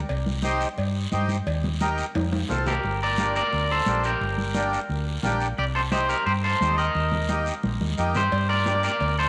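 A round, dark hollow-body electric bass opens this fiery, danceable cumbia excerpt in G minor at 175 BPM, joined by soft-handed, damped congas in the background, a raspy guiro, ringing vintage cowbell and timbales that drop out at 2.7 seconds and return near the end, and a reedy, full accordion, before a bright, twangy electric guitar at the edge of break-up takes the melody up front at 2.7 seconds with spring reverb, all set in a moderate plate reverb.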